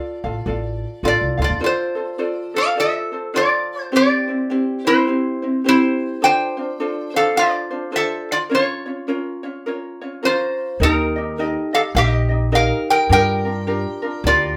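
Recorded live in one room with a wet studio ambience, this relaxed, languid Hawaiian swing piece features a bright, nasal metal-body resonator slide guitar carrying the melody with fingerpicks over a light, fingerpicked ukulele, while a woody, thumpy pizzicato upright bass plays from 0.2 to 1.6 seconds and returns at 10.8 seconds as the chords move through Eb and Gm7.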